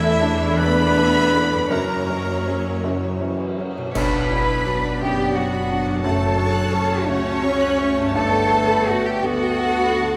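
Bathed in the wet reverb of a scoring stage, this sorrowful, rubato film-score fragment in 6/8 sets a rich, expressive violin melody over a second violin line, clear clarinet, a distant oboe that drops out at 2.8 seconds, a mellow, hollow flute group, a felt-muted upright piano with audible action noise, lush violas, dark French horns holding chords, bright ringing harp arpeggios, cellos with portamento and focused double basses, while dark clash cymbals and a dry concert bass drum mark an accent at 4.0 seconds.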